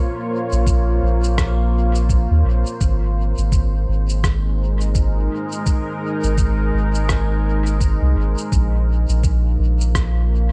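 A slow 84 BPM groove in 4/4, swung at 60% on the sixteenths, sets this ambient dub piece in a meditative, hazy mood, tuned slightly low to A4 = 438 Hz. A deep, dark ambient pad opens alone at 0.0 seconds with sustained chords built from detuned unison sawtooth layered with sine and a sub octave; its slow attack, long release, chorus and built-in reverb give it a moody, evolving, mellow glow. At 0.5 seconds a soft, round dub sub bass arrives up front, its triangle and square wave tones sustained with a fast attack, alongside a quiet electronic cabasa and rim click set in studio ambience and dub echo. A thumpy electronic kick drum follows at 0.7 seconds, and both percussion parts share a sampler-style, compressed, pitched-down, muffled character. Cut from a longer piece, the passage moves from Bbm to Ab and back to Bbm, with the overall mix kept fairly dry.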